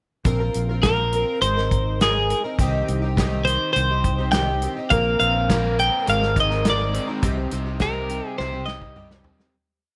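This wistful, reflective folk rock and heartland rock piece opens at 0.2 s with a boxy, shimmering plugged-in twelve-string acoustic guitar strumming sixteenths in open, octave-doubled chord shapes, coloured by analog chorus and a touch of finger squeak. A natural country drum kit arrives with it, playing a rock groove with a punchy kick and medium-tuned snare, and a round, up-front fingered electric bass follows with a dotted figure. A bright, clean, compressed twelve-string electric guitar carries a free-roaming melody up front, moving over a Bbsus2, Abadd9 and Cm progression in C minor at a straight 103 BPM. At 4.9 s a crunchy, double-tracked overdriven guitar slips in underneath with picked arpeggios. The whole verse sits in light reverb and small room ambience, fading out from 7.2 s as the drums close with a fill.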